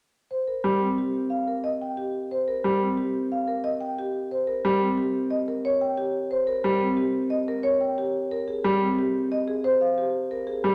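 The up-front marimba with medium mallets carries an airy melody from G4 to G5, while a bright concert grand piano with deep bass and long sustain holds a G3 accompaniment and a second, mellow rosewood marimba with soft mallets weaves woody arpeggios between C4 and Bb4. This meditative, hypnotic minimalist pattern music moves at 180 BPM in a straight 6/4, tuned to A4 = 438 Hz, resting on a C7(no3) chord before shifting to Abmaj7 at 8.1 seconds. The short excerpt from a longer piece sits in a wet recital hall reverb that lends the parts a spacious glow.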